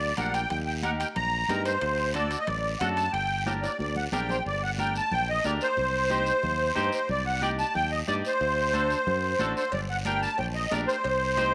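A reedy, shimmering musette accordion carries a fiery, passionate melody up front over a growly fingered electric bass in this 182 BPM cumbia excerpt in G harmonic minor. At 0.2 seconds it is joined by a clean semi-hollow electric guitar with lush chorus, soft-handed congas, a raspy guiro and ringing timbales and cowbell, which drop out at 4.4 seconds and return at 9.7 seconds. A drum fill arrives at 3.5 seconds, and everything is set in a moderate echo-chamber reverb.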